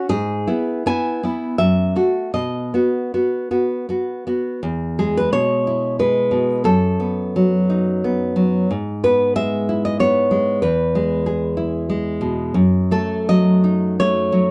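A fingerpicked nylon-string guitar sits up front with a deep classical tone in this sunny, nostalgic romantic solo piece in E major and 3/4, moving with rubato between 75 and 98 BPM through chords such as F#m, B7/F# and D#dim/F#, with a new passage beginning at 4.6 seconds, light reverb and a soft top end, in a 14.5-second excerpt cut from a longer piece.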